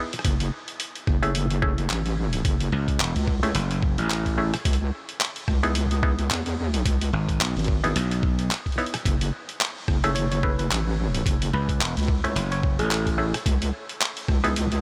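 Glitch hop at 109 BPM in F# dorian with a gritty, funky swing, this excerpt from a longer piece moves between F#m7 and C#m9 as a heavy, dark wobble bass with chorus sits up front beside a thumpy, pitched-down electronic kick and a compressed boom bap sampler-style kit of handclaps, hi-hat and rim click, while overdriven muted clav stabs with sidechain pumping and tape echo add a hollow, nasal bite, a growly, bright slap bass joins at 2.7 seconds, and a woody wave-folded pluck drifts in the background from 10.2 to 13.2 seconds, all in light reverb.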